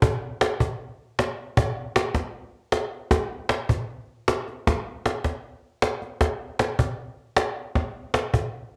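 A woody, acoustic cajon with faint snares sits up front and plays alone from 0.0 to 8.5 seconds in this intense, passionate flamenco fragment at 155 BPM in a straight 4/4, moving into a new section at 3.1 seconds, captured as a home cassette recording in a live room with light reverb and cut from a longer piece.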